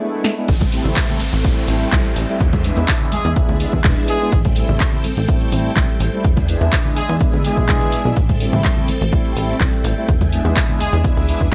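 A light reverb and pumping, low-pass-filtered sheen give this nostalgic, funky slice of filtered disco house in A minor its feel, cut from a longer piece and moving at 125 BPM over Am7 and E7. A punchy, tape-warm electronic kick sits up front beside a house kit of handclaps, crash, snare and warm hats, while bright acoustic shaker and congas stay in the background, a wave-folded, plucky analog bass drives the low end, a round, brassy synth brass part accompanies, and a swirling, phased string machine with vintage 12-bit grit holds the chords. After an electronic swell and downlifter open the break, the drop lands at 0.5 seconds, and a tight, close-miked horn section enters at 3.1 seconds with light vibrato, octave doubling and digital delay.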